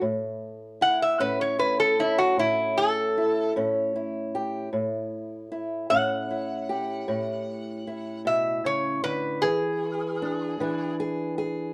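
Acoustic country blues for two guitars in a straight 12/8, gritty and rollicking, in a short cut from a longer piece. A fingerpicked old ladder-braced acoustic guitar with dark, woody, boxy tone from old strings carries the accompaniment from 0.0 seconds, sitting on an A7 chord before moving to E7 at 9.4 seconds. Entering at 0.8 seconds, a bright, nasal, metallic resonator slide guitar played with fingerpicks takes the melody up front, and both parts are set in a moderate studio reverb.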